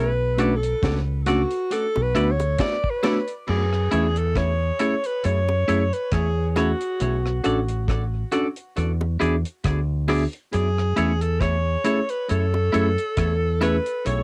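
A breathy alto saxophone opens this slow, longing lovers rock reggae piece, soloing over a deep, round fingered electric bass that sits up front from the first moment. Both play in F# minor at 68 BPM in 4/4, with a gentle swing on the sixteenths. The saxophone is close-miked and intimate, with a soft attack, whispered subtone and jazz-style vibrato. At 0.4 s the rest of the band arrives: a mellow tine electric piano heard through its built-in speakers, bright, clean and compressed stabs from a twangy electric guitar with tremolo, a dark, dry reggae drum kit with a high-tuned snare, tight kick, rim click, hi-hat and crash cymbal, and tight, high-tuned bongos played with hard hands in the background. The chords move from Bm7 to E7sus4, then from 3.5 s cycle through F#m7, Bm7 and E7 before returning to F#m7. The saxophone, piano, guitar and drums carry cassette tape coloring and tape echo within a light reverb and a smooth home-recorded sound, and the piece is cut from a longer performance.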